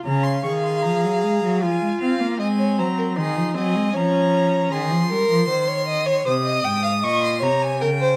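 A focused, up-front cello anchors this serious, contemplative passage from a baroque-style string-quartet fugue in Db major at 77 BPM in 3/4, beneath a distant, smooth first violin carrying the high melody, a second violin shaping its line with expressive portamento, and a rich, even viola accompaniment that stops at 4.7 s, all four bowed with vibrato in a moderate stone-room reverb.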